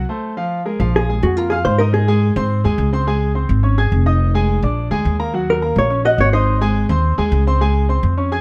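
A dark, clean hollow-body jazz guitar with plate reverb and a compressed tone carries the melody in phrases at 1.0 and 5.5 seconds, over a woody, thumpy pizzicato upright bass and a clear, natural grand piano accompanying throughout this driving, sophisticated straight-feel jazz fragment in 4/4, cut from a longer piece and set in a moderate studio room.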